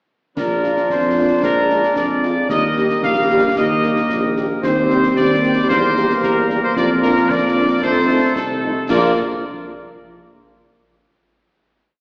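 The bright trumpet section leads this short, spirited military-style march for wind band, carrying the melody up front with a tight, vintage sound and light vibrato. Beneath it, a mellow woodwind section holds a distant, roomy second line, while a bright trombone section sits loosely in the background with sustained chords and a very quiet French horn section adds after-beat and sustained chords from 0.6 seconds. A smooth-topped tuba anchors the bass on the beats, and concert snare drum, dark clash cymbals and concert bass drum sound close and dry, with a marching snare over the bass drum on the beat. The piece moves at 113 BPM in a straight 2/4 in Bb major, running through a festive progression before landing on a final chord at 8.9 seconds. The whole ensemble is heard from further back in a wet scoring-stage reverb with a lo-fi AM radio character, giving it the feel of an old broadcast.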